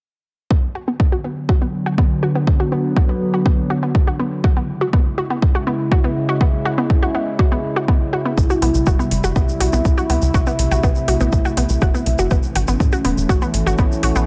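Light digital ambience surrounds this hypnotic, driving melodic techno excerpt at 122 BPM in B dorian, where a resonant, wave-folded pad holds sustained chords with chorus, phaser and sidechain pumping, and a detuned analog pluck spins arpeggios through chorus, digital delay and a filter sweep. An overdriven, deep electronic kick sits up front from 0.5 seconds. At 8.4 seconds a tight, nasal sequencer bass and a grainy egg shaker join, soon followed by metallic electronic hi-hats, also run through overdrive, as the chords move from Bm through C#m and C to A.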